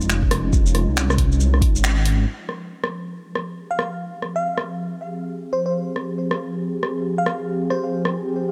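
Ghostly and nocturnal, this future garage excerpt moves at 138 BPM in 4/4 with a 62% swing on the sixteenths, set in F minor. An airy, breathy pad holds sustained chords throughout, its slow attack and long release softened by chorus and pumped by sidechain, moving from Dbadd9/F to Fm9 at 2.3 seconds. Beneath it, a dark detuned saw bass rumbles up front with a beating, sidechained tone until 2.3 seconds, while a deep electronic kick sounds from 0.2 to 1.7 seconds. A deep house kit of finger snaps, hi-hat, rim click and shaker carries the groove, with a band accent landing at 1.8 seconds. From 3.7 seconds a bell-like FM electric piano enters with a sparkling melody, treated with chorus and tape echo, all set in a light digital ambience.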